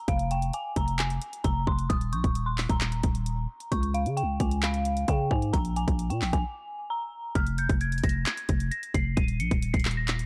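A dark, digitally ambient mix frames this brooding, menacing trap excerpt in F minor, moving at 132 BPM with a half-time feel. An eerie, detuned FM synth bell carries the high melody with a warbling, vintage character shaped by chorus, low-pass filtering and tape echo, while a growling, buzzy 808-style bass sits up front. An overdriven trap kit of handclaps, bright hi-hats and a hard-clipped kick drives the track into a break at 6.4 seconds before the new section arrives at 7.4 seconds.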